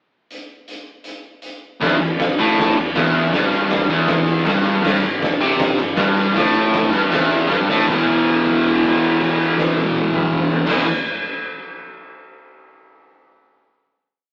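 Garage rock in E minor at 158 BPM, this short, menacing piece opens with an oversized low-tuned drum kit alone for a pickup bar, its fat snare and boomy kick stomping in a bright stone room before a double-tracked fuzz guitar enters at 1.8 seconds with a bright single-note riff over Em and Emadd11. After a drum fill, the guitar settles on a held E5 chord from 7.9 seconds to the end. The raw, rough rehearsal-room sound carries tube saturation and an AM radio tint, with both parts pushed up front.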